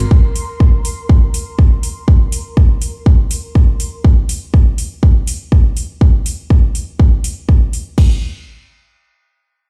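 Feel-good and joyful, this piano house excerpt opens with a silky, detuned analog string pad holding a sustained chord under a filter sweep, its ensemble chorus and sidechain pumping carrying it until it drops away at 4.1 seconds. A punchy, up-front electronic kick drives on to 8.1 seconds beside a tape-warm house drum kit of crash cymbal and metallic hi-hats, with a gentle swing on the sixteenths. The whole excerpt sounds as if played on a big sound system in a bare room with stone reverb.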